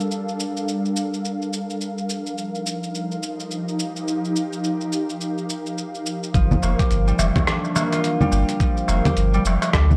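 Meditative and earthy, this organic downtempo piece in G minor moves at 106 BPM with a 16th-note swing, opening on an ethereal, airy pad of detuned sustained chords with chorus, sidechain pumping and a filter sweep, over a gritty, dusty soul drum kit of congas, hi-hat, rim click and shaker. At 6.3 seconds a ringing, fingerpicked concert harp enters with delayed arpeggios, joined by a deep, round sub bass and a thumpy electronic kick, and moments later by a small, distant clay-shell darbuka played with hard hands. An echo chamber reverb and the warbling pitch drift of worn cassette tape give the whole passage a hazy, aged character.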